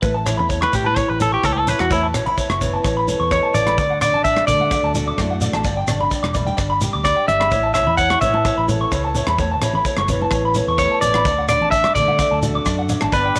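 A clean, bright electric guitar carries the up-front melody from 0.6 s through tape echo in this sunny, danceable highlife excerpt at 128 BPM in A mixolydian, over twangy, slightly broken-up arpeggios from a second electric guitar through a small old amp, a boxy ladder-braced acoustic guitar picking the accompaniment, a round, dark fingered bass, a tight funk drum kit of hi-hat, kick and rim click, a grainy, distant shekere, and damped, thick-skinned congas joining in the background at 0.4 s, with light studio reverb.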